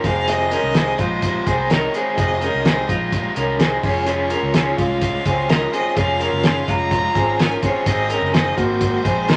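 Jangly indie pop with a breezy, youthful mood, this short excerpt moves in a straight 4/4 and is cut from a longer piece. A muffled, cloth-damped drum kit sits up front with a fat snare, tight kick and hi-hat, its gritty, saturated sound rolled off at the top. A twangy electric guitar through a small old amp plays tremolo-treated arpeggios, bright and slightly broken-up, while a raw garage guitar adds overdriven, picked accompaniment underneath. A vintage muted bass gives a round, punchy, foam-muted low end, and a distant bowed violin carries the smooth, even melody with vibrato. Light reverb frames the group as the harmony moves from Fm7 to Db/F at 3.8 seconds and on to Ab at 7.9 seconds.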